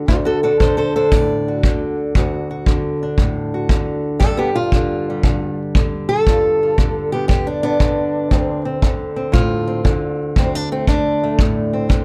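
Acoustic country blues in 4/4 at 117 BPM with a swung feel, this gritty, soulful excerpt is cut from a longer piece and sits in a dry space. A fingerpicked old ladder-braced acoustic guitar carries the melody up front across the whole passage, its boxy voice moving over D, G7 and D5 between D2 and D5, tuned to A4 = 439 Hz. A tight, roomy kick drum played with brushes enters at 0.1 seconds and holds the beat to the end.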